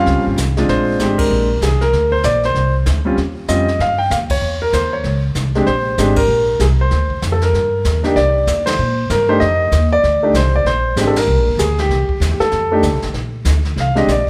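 A clear, intimate grand piano carries the melody over a woody, growly pizzicato upright bass from the first moment, with a distant brush kit of dark cymbals and a boomy kick joining just after, in a relaxed, warm swing jazz trio at 193 BPM in Bb mixolydian. The band hits shared accents through the passage, including at 1.2 and 11.1 seconds, while rich extended chords move beneath the tune. At 13.1 seconds the piano's solo begins, its action noise audible up front in a moderate recital-hall reverb.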